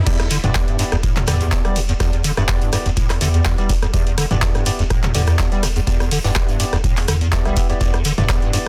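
A swung sixteenth-note groove in 4/4 drives this gritty, hypnotic acid house drop, built on a deep analog electronic kick and a punchy drum machine that sounds re-recorded in a small room, with crash, handclaps, hi-hat, rim clicks and toms. Underneath sits a very quiet big-room acoustic kit offering natural hi-hat and a medium-tuned snare, while a grainy, mellow shekere lingers distant in the background. The squelchy, hollow square-wave acid bass carries the riff with resonant filter plucks, colored by ensemble chorus, cassette tape grit, tape echo and sidechain pumping. A round sine sub bass holds the low end with sidechain pumping of its own, and a bright, barky, clean tine electric piano through a combo amp punctuates with stabs over an Em7 chord, treated with analog chorus and tape echo. The mix is dry, dense and heavily limited, and the whole fragment, cut from a longer piece, runs as a single section from 0.1 to 8.7 seconds.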